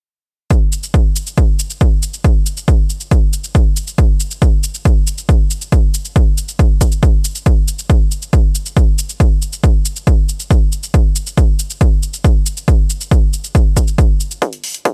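A punchy, layered electronic kick drum sits up front with a high-pass filter on it, driving this emotional trance excerpt at 138 BPM in a straight 4/4, playing from 0.5 to 14.9 seconds alongside a quieter, tape-warm analog electronic shaker and hi-hat that pump with sidechain, all in a dry mix with little reverb.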